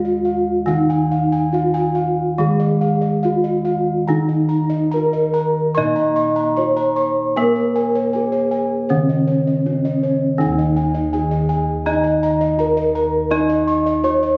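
Captured on a phone in a recital hall, this short cut from a longer Javanese gamelan piece carries a moderate hall reverb, an added club-style reverb and noticeable compression. The mood is ceremonial and shimmering, in a straight 4/4. A bronze metallophone carries the melody throughout, its padded disc mallets giving a mellow, soft ringing tone, and its paired tuning producing shimmering beats that sit forward in the mids. Beneath it, a second metallophone struck with a horn mallet plays a brighter accompaniment an octave lower. Bossed gongs supply high arpeggios, padded, round and beating, with a boxy small-room character. Lower gongs anchor the bass in the same soft, round bronze tone, and at 10.4 seconds the music moves into a new section that runs to the close at 14.4 seconds.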